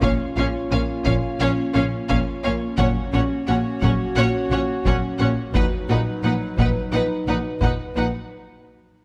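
Heavy-stick taiko drums, recorded in a small room, drive this brooding, relentless cinematic cue, a hybrid orchestral and electronic film score in 4/4 at 87 BPM that is cut from a longer piece. Beneath them, a dark cello section and a rich double bass section hold the bass line with lush, bowed vibrato, the cellos sitting in the background with a soft attack and portamento. A violin section carries the smooth, even melody high above, joined by a more distant second violin line and an expressive viola accompaniment. A dark French horn section in classical style and a hollow, flute-like, airy pad with chorus sustain the chords in the background, while a very quiet, round synth pluck with a filter sweep and detuned layers traces arpeggios. The harmony moves from Bbm through Gb/Bb to B/Bb over close, detailed microphones and light reverb, before everything drops away into a brief break from 8.3 to 9.0 seconds.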